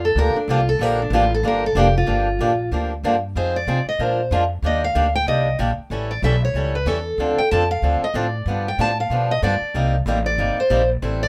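A moderate club reverb gives this short cut from a longer gypsy-jazz performance a snug, intimate room sound, with all three acoustic parts sitting up front. It is a bittersweet, swinging piece of jazz manouche in G minor at a brisk 188 BPM, with a lilting swing feel in 4/4. A picked steel-string acoustic guitar carries the melody as a solo throughout, its fresh strings giving a clear, warm tone marked by audible finger squeaks. A picked swing-style acoustic guitar provides accompaniment with a bright, boxy bite. Beneath them, a pizzicato upright bass on gut strings adds a woody, thumpy foundation. The harmony moves from Gm7 through Fm7, Bb7 and Ebmaj7, then passes through A7, Dm7 and G7 before reaching Cm7.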